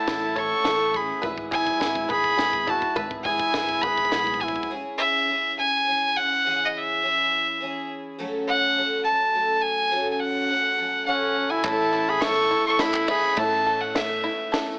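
Bittersweet and yearning, this snippet of indie folk moves in a straight 3/4 at 104 BPM in C# minor, its reedy, gut-string fiddle carrying the melody up front while a close-miked trumpet with light vibrato sings a second line beside it. A shimmering, octave-doubled twelve-string acoustic guitar picks steadily throughout, joined in the opening build-up by a worn, slightly detuned upright piano, twangy fingerpicked banjo arpeggios with slapback echo, a round hollow-body electric bass and a dry cocktail kit whose drum fill, dark cymbals and high-tuned snare drive to 4.7 seconds. Those parts fall away while the fiddle and guitar carry on, then return around 11.6 seconds with crisp group handclaps, all set in light reverb, studio ambience and an AM radio sound.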